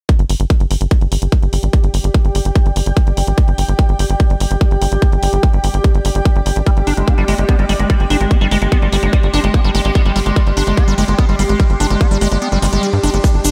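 Intense and alien, this psychedelic trance excerpt drives along at 146 BPM in a straight 4/4, cut from a longer piece. A tight, up-front electronic kick and warm, layered hi-hats set the pulse beside a punchy, nasal sequencer bass whose sawtooth and square-wave filter plucks strike fast and decay. Above them hovers a mellow granular cloud pad, blurred and detuned, slowly evolving with built-in reverb, subtle chorus and sidechain pumping. At 6.7 seconds a squelchy, resonant acid bass riff enters with filter sweeps, phaser, tape echo and its own sidechain pumping. The kick drops out at 12.4 seconds as a very quiet electronic swell passes through, and a grainy, bright, vintage tube shaker slips in at 13.2 seconds, all set in a light reverb.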